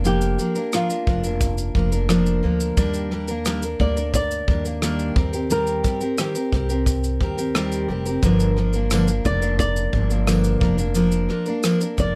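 The sound is dry and intimate, captured with close, detailed microphones that place the players near the listener. This heartfelt, easy-going acoustic pop piece moves at 88 BPM in a straight 4/4 in Bb major, and it is cut from a longer piece. A full-bodied steel-string acoustic guitar sits up front, playing picked accompaniment. Beneath it, a woody, thumpy upright bass is played pizzicato on gut strings, and a soft brush kit adds a punchy kick, rim click and shaker. From 0.1 seconds, a warm flamenco guitar carries the fingerpicked melody as the harmony passes from Bb/F through Ebmaj7, Cm7 and Gm7 back to Bb/F. A faint, jingly tambourine, sounding distant as if in a large room, joins at 8.9 seconds and stops at 11.8 seconds.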